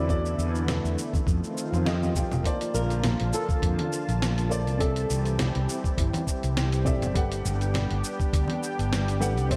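A dark, mellow grand piano with a worn, boxy tone and audible action noise opens alongside a thick, warbling unison pad and an up-front, growly fretless bass, setting a relaxed, blissful sunset chillout mood in a lightly swung 4/4. Almost at once a dusty sampler-style kit joins with hi-hat, shaker and a fat, gritty snare, anchored by a compressed, thumpy electronic kick, while low-tuned congas sit in the background from 0.7 seconds. The piano carries tape echo, the detuned sawtooth pad swims in chorus with its slow attack and long release, and the bass has a bright, amped bite along with tube saturation. At 2.7 seconds a thumb-plucked flamenco guitar enters with the melody, its finger squeaks audible through lush chorus and tape echo. The harmony drifts from E7sus4 and F7 into Bbmaj7, C6 and Gmaj7, and the whole cut from a longer piece is soaked in a dreamy hall reverb.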